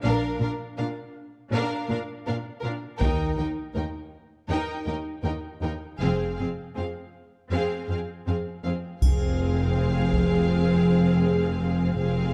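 A straight 4/4 pulse at 81 BPM drives this relentless, heroic excerpt of epic orchestral film score in F dorian, moving from Bb to Eb to Fm. A distant, focused violin section carries the high melody over a lush, intense second violin line and clear violas. Beneath them, smooth, up-front cellos and double basses set further back hold the low end, all played bowed with vibrato. Heavy, saturated taiko hits land at 3.0 and 9.0 seconds, joined at 9.0 by a faint, bright triangle. Moderate scoring-stage reverb gives the whole a dark, warm sound.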